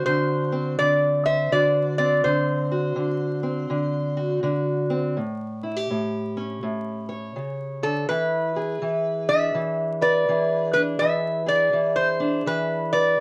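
Soulful and laid-back, this excerpt of acoustic country blues at 82 BPM in a swung 4/4 pairs an up-front lap resonator guitar, playing a metallic, nasal slide melody with fingerpicks, with a dark, boxy parlour steel-string acoustic fingerpicking the accompaniment through D7, A7 and E7, both captured by close, detailed microphones with light reverb and a layer of vinyl crackle.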